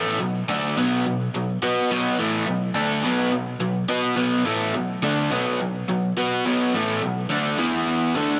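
A bright, double-tracked overdriven electric guitar plays alone and up front in this swaggering, driving rock clip, its picked B5 power chord shifting to E5 at 7.6 s, with tape echo on the guitar and a large studio reverb around it.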